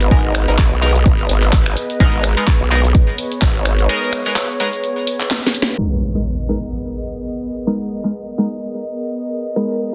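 A swung 127 BPM house groove in 4/4 drives this aggressive, gritty bass house excerpt in G# minor, built on a punchy electronic kick and a layered kit of cracking snare, snaps, claps, hi-hat and shaker, with a nasal, saturated vowel-sweep wobble bass pumping beneath them until the bass drops out at 3.9 s. A band-passed, ring-modulated sawtooth chord stab sits up front over a warbling, lo-fi pad, both pumping with the sidechain, while the stab's phaser and delay add motion. After a drum fill and band accent, an electronic impact hits at 5.8 s as the drums fall away and filter sweeps carry the stab through to the end over the nostalgic pad, all within light reverb and a dense, heavily limited master.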